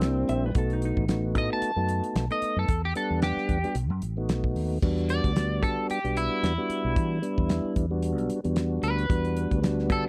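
A dry, close 1970s-style studio sound with small room ambience frames this brooding, mournful soul blues excerpt, cut from a longer piece and set in a straight-eighth 4/4 feel with a light swing on the sixteenths. Up front, a twangy electric guitar at the edge of break-up carries the melody through analog chorus, moving into a clean-toned solo from 4.8 seconds. A mellow tonewheel organ, lightly overdriven with chorus vibrato and a slow rotary speaker, holds the accompaniment in a round, dark voice. Beneath them, a punchy fingered electric bass and a damped 70s drum kit, with its fat snare, tight kick, dark cymbals and rolled-off top, sit close and dry. A compressed, clean lap steel guitar slides in briefly as a second line at 0.3 seconds, quieter than the rest, while the chords move from C7 and B7 to Em7.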